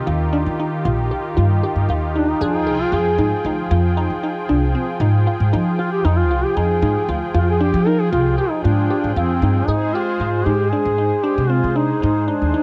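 Brooding and tense, this progressive instrumental in F dorian moves at 116 BPM in a straight 7/4, with a brassy, detuned analog pad holding chorused sustained chords while a glassy wavetable pluck spins short crystalline arpeggios and a woody pizzicato upright bass sits up front, until a mellow duduk enters at 2.2 s with a vibrato-laden folk-style solo coloured by tape echo, all set in a moderate booth ambience and captured as a home cassette recording before the harmony shifts to Ab at 9.7 s.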